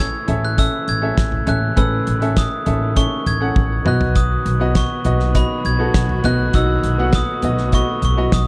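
Warm and anthemic, this short piano-driven pop fragment moves in a straight 4/4 and is cut from a longer piece. A bright upright piano with a brilliant, woody tone and short sustain carries the accompaniment, while a glockenspiel struck with hard plastic mallets rings out the melody in sparkling, bell-like tones high above it. Beneath them, a dark studio string section holds lush, bowed chords played sul tasto with vibrato, sitting in the background, and a pizzicato upright bass with steel strings adds a woody low end. A damped 1970s drum kit enters at 0.3 seconds, up front with a fat snare and tight kick, and plays a fill from 3.6 to 4.2 seconds as the harmony moves from A to B at 3.9 seconds. The sound is a dry, close studio recording in a 1970s style, with little reverb.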